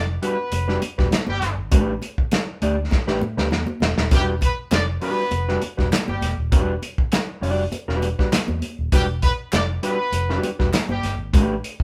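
A live band playing together in one room, with moderate studio reverb, gives this short funk cut a strutting, playful air. The soul drum kit sits up front with a dark, smooth tone, a punchy kick and a medium-tuned snare, and it plays a fill from 2.9 to 4.1 seconds. Underneath, a vintage foam-muted fingered electric bass sounds round and amped, while a mellow, clean electric guitar, fingered and up front, carries the accompaniment over chords moving from Em9 to A9sus4 and back. A horn section with light vibrato plays a second line in a pop style, roomy and ensemble-like despite its forward placement. High-tuned congas ring under soft hands in the background, and a very quiet, hollow group handclap joins at 4.7 seconds.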